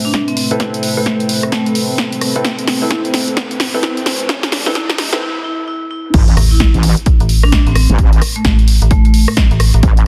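Bass house at 130 BPM in A minor, swung on the sixteenths, this gritty, bouncy excerpt opens on an Amadd9 chord with a build-up and drum fill before a short break and a drop at 6.1 seconds. A punchy, tape-warm electronic kick and an up-front house kit of snare, hi-hat, rim click and crash drive it from the start, while a hard-mallet vibraphone carries the melody with ringing, boxy tone, 12-bit sampler grit and tape echo. Beneath it, two deep, moody ambient pads sit in the background with chorus and reverb, one holding sustained chords and the other adding a mellow texture, both pumping against the kick alongside natural piano stabs with tape echo. A very quiet riser and sub drop thread through the build and into the impact. At the drop a heavy, resonant wobble bass arrives up front on a low A, joined moments later by a metallic, digital FM bass on the same note, both tube-saturated and pumping, in a dense, heavily limited mix with light reverb.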